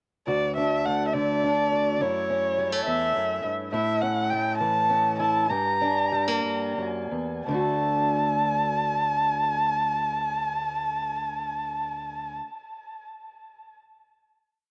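A warm, bowed erhu carries the melody up front in this short, nostalgic and uplifting indie folk piece, singing motif-based sentence phrases with smooth, even tone, vibrato and portamento, colored by cassette tape saturation and a tape echo. Beneath it, a fingerpicked acoustic archtop guitar provides dark accompaniment, also up front, with an alternating-thumb fingerstyle pattern, its finger squeaks audible. The music sits in 6/8 with a straight feel at 56-70 BPM counted in dotted quarters, in D major with tuning at A4 = 438 Hz. The verse moves through D, F#m7, A and a colorful Gm, slowing down from 3.7 to 7.5 seconds before settling on a final D chord at 7.5 seconds. Light reverb and the intimacy of a home cassette recording give the piece a homespun, memory-like glow.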